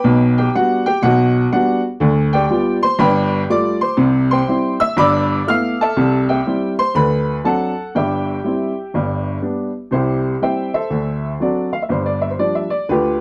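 Playful and exuberant, this short stride piano passage swings at 122 BPM in 4/4 in C major, cut from a longer piece. A clear, woody upright piano plays solo from 0.0 to 13.2 seconds, spanning G1 to F6, up front and open in a dark production with moderate studio reverb and a faint mains hum. The harmony moves through dominant colours like G9 and G13 before a new section at 9.9 seconds cycles through C, D7 and G7.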